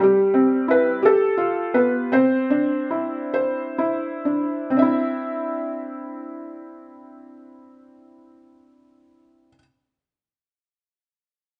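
A dusky, softened sound fills a stone room with moderate reverb, captured live with its top end rolled off. A solo felt-muted upright piano sits up front, mellow and intimate with a thin felt tone, moving through C/G, G7 and Cadd9 in C major. This tender, sleepy children's piece in a gentle 6/8 at 38-60 BPM slows over its opening 4.8 seconds, and the piano plays until 9.6 seconds in this fragment of a longer work.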